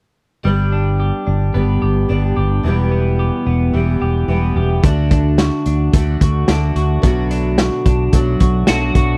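A straight 4/4 pulse at 109 BPM drives this youthful, breezy jangly indie pop excerpt in G major, where a shimmering, octave-doubled fingerpicked twelve-string acoustic guitar and a twangy twelve-string electric guitar playing arpeggios with slapback echo ring over a growly, up-front fretless electric bass through G, Em, D and Bm7, before a gritty, muffled garage drum kit with a punchy kick enters at 4.8 seconds and a bright, clean electric guitar melody with analog chorus appears at 8.7 seconds, within a dry, close 1970s-style studio sound.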